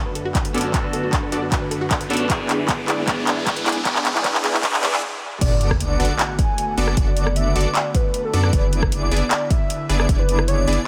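A punchy, full-bodied supersaw stab carries the riff from 0.5 s, its detuned sawtooth tone softened by cassette-tape color and a low-pass filter that sweeps through the build-up. This bittersweet, dreamy future bass excerpt moves at 154 BPM in a half-time feel, drifting between Bm7/F# and E7/F# over a breathy pad that sits in the background with chorus and sidechain pumping. In the opening build, a twangy, slightly broken-up electric guitar with phaser and delay, a very quiet lush unison pluck playing arpeggios, and a background riser with sub drop gather over a drum fill before a brief stop. At 5.4 s the drop arrives with an impact: a velvety, mellow synth lead with portamento and tape echo takes the melody, a soft, bright lead with vibrato repeats a single high note in arpeggios, and a thick, saturated sub bass sits up front. Throughout, a layered pop kit with metallic hats, handclaps, rim clicks and crash joins a punchy, tape-toned electronic kick, both placed prominently in a light reverb.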